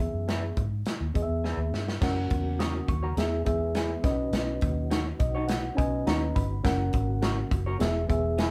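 Uptempo 1960s-style soul at 104 BPM in B major, this uplifting excerpt has a reedy, up-front electric piano and a dark, foam-muted fingered bass playing from the start, joined by slightly broken-up, lo-fi guitar stabs with tremolo and a punchy, natural-sounding drum kit that plays a fill at 1.4 seconds, before a very quiet, mellow tonewheel organ enters at 2.0 seconds with sustained chords through a rotary speaker, and the electric piano takes a fill at 4.9 seconds, all captured as a live band in a small room.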